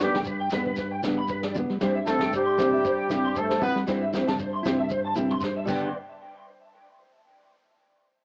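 Sunny and carefree, this short highlife guitar band cut in G major at 116 BPM sets a mellow, vibrato-tinged horn section melody up front over twangy, slightly broken-up electric guitar arpeggios with tape echo and chorus, dark fingerpicked steel-string acoustic guitar, round fingered electric bass, a vintage brush drum kit with a punchy kick and a fill from 4.9 s, and low-tuned congas and grainy shekere in the background, all bathed in spring reverb with the lo-fi feel of a home cassette recording.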